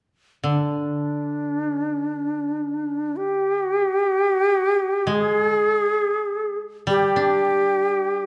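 Unmetered and in free time, this brief passage from a longer work of Japanese traditional chamber music unfolds with an austere, calm stillness. The koto enters at 0.4 seconds as accompaniment, its fingerpicked strings sounding dry and woody in the range from D3 to D4, sitting beneath the melody. A moment later, at 0.5 seconds, the end-blown bamboo shakuhachi takes the lead up front, airy and reedy, with tongued attacks, breathy chiff and vibrato as it moves between D4 and Ab4. Both instruments continue together until the passage breaks off at 8.3 seconds. A moderate recital-hall reverb surrounds the pair, and the overall production leans dark and warm, setting off the shakuhachi's brighter edge.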